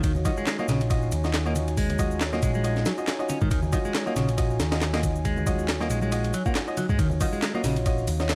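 A round, hollow-body electric bass sits up front in this funky, raw breakbeat excerpt, riding a compressed, gritty sampler-style break with a thumpy kick and high-tuned snare, layered with a house kit's handclaps, hi-hat and shaker and very quiet, damped congas. A clean, twangy electric guitar riff runs through tape echo, and polished grand piano stabs carry vintage 12-bit sampler crunch and echo of their own, while a deep, detuned analog pad holds sustained chords in the background with chorus and sidechain pumping. The mix has little reverb and a light swing on the sixteenths.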